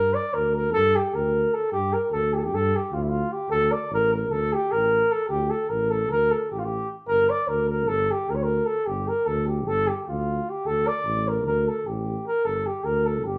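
Bittersweet and restless, this short Balkan folk passage, cut from a longer piece, moves in a lilting nine-eight metre with a straight feel. A mellow flugelhorn carries the melody from start to finish, its soft attack and light vibrato giving the line a gentle, classical poise, while it sits up front yet sounds slightly distant and roomy. Beneath it, a tuba supplies the bass throughout, its mellow tone and soft attack lending a composed, classical steadiness at a lower level than the horn. The harmony opens on G minor and then shifts among bare open fifths on D and G, keeping the mood unsettled. The two players perform live in one large studio, and a moderate reverb gives the duo a natural sense of space.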